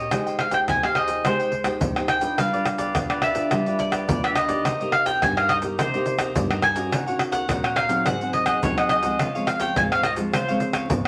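A round, double-strung mandolin carries the bittersweet, yearning melody up front in this 106 BPM samba and choro passage in Ab major, cut from a longer piece, over a crisp, bright cavaquinho in the background, a warm thumb-plucked classical nylon-string guitar, and close, dry egg shaker, tight surdo, pandeiro and tamborim, all set in a wet studio reverb with a veil of vinyl crackle as the chords move from Abmaj7 through G7, Cm7, Ebm7 and Ab7 to Dbmaj7.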